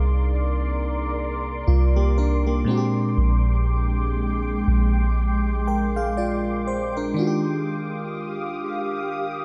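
A dark, warm production with light reverb and a faint mains hum frames this short, late-night R&B cut, which moves at a slow 60 BPM in 4/4 with a gentle swing on the sixteenths. An FM electric piano sits up front, its bell-like attack and noise layer giving each chord a glassy edge, colored by chorus and phaser as it plays accompaniment from Bb2 up to G5. Behind it, an ethereal FM pad holds sustained chords with a slow attack and long release, its mellow, sine-like tone softened further by ensemble chorus and its own reverb. A deep, round 808-style bass, also sitting up front, anchors the low end between Bb1 and C2 before stopping at 7.1 seconds. The harmony drifts from Cm9 to Bb13 at 2.7 seconds, then settles on Ebmaj9 for a break at 7.2 seconds where piano and pad carry on alone, leaving a longing mood as the fragment ends.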